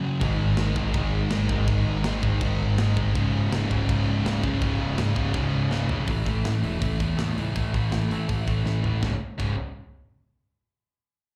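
A punchy, fuzzed-out electric bass sits up front, picked and overdriven with a bright, direct-and-amped edge, driving this urgent, raw punk rock passage in C# minor at 163 BPM in a straight 4/4. Beside it, a sludgy, overdriven guitar opens the riff alone for a split second before the band crashes in, its warm tone sitting just as close. Two tight, brighter distorted guitars play the same riff further back, one carrying a slapback echo, and the double-tracked one drops out at 6.1 seconds as the harmony moves to A5. The acoustic metal kit sits mid-forward with a medium-tuned snare, tight kick, crash, hi-hat and toms, its saturated, gritty sound rolled off at the top, and it throws in two short fills leading into new sections. The harmony moves from G#5 to C#5, through A5, and back to C#5 at 9.0 seconds, all heard as a live club gig through the venue's PA with only a little room reverb in this cut from a longer piece.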